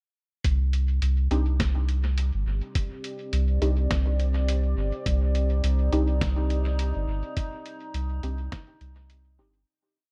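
Ambient dub in C minor at 104 BPM, this short, whole piece moves with a loose sixteenth-note swing and a deep, meditative mood, settling on a Cmadd9 chord from 0.4 seconds. A round, soft sub bass sits up front from the start, carrying a sustained dub-style line, while a muffled, thumpy electronic kick plays a slow pulse in the background and a pitched-down, tape-warm sampler kit adds closed hi-hat and a fat snare in a sparse, echoing beat. Filtered chord stabs arrive at 1.3 seconds, muted and mellow with a phaser and dub echo, one shape moved in parallel. A dark, detuned pad with chorus and reverb swells in underneath at 2.4 seconds with slowly shifting chords, and a calm, glassy texture of drifting overtones holds a single high note from 5.5 seconds. The piece fades out from 6.6 seconds, wrapped in a digital ambience.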